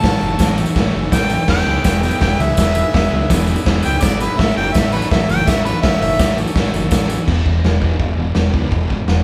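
A clear harmonica solo with light vibrato and a touch of overdrive opens this swaggering, rowdy garage rock excerpt at 166 BPM in E major, played by the band live together in a room with moderate large-studio reverb. Beneath it, a double-tracked fuzz guitar picks a thick low riff while a fingered electric bass adds overdriven grit, both sitting in the background. A vintage, reedy combo organ holds clean sustained chords, and a jingly tambourine rattles close and dry. The raw acoustic drum kit sits up front with a punchy kick, a medium-tuned snare, crash, hi-hat and toms, its saturated sound dark and smooth with a rolled-off top. The harmony moves from A to E and back to A. The harmonica stops at 6.4 seconds and the organ and tambourine at 7.2 seconds, and from 7.3 seconds guitar, bass and drums carry on to an E5 chord until the cut.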